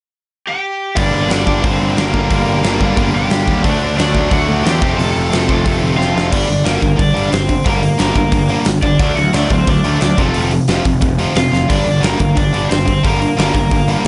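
Punk rock with an urgent, raw drive, this short cut from a longer piece charges ahead in a straight 4/4 feel. A cranked stack guitar carries the melody with a bright, overdriven edge, starting alone at 0.5 seconds before the band crashes in at 1.0. Two distorted guitars drive the riff: a tight, picked one sits up front for the whole stretch, while a compressed second guitar stays in the background and drops out at 6.3 seconds. Beneath them a picked electric bass growls with fuzz, and a big acoustic rock kit with a fat snare and punchy kick rings in a stone-room ambience, with fills marking the turn near 6.0 seconds and again around 11.5. The chords cycle through G minor, D and F twice, and the dry, close sound keeps every hit and pick stroke immediate.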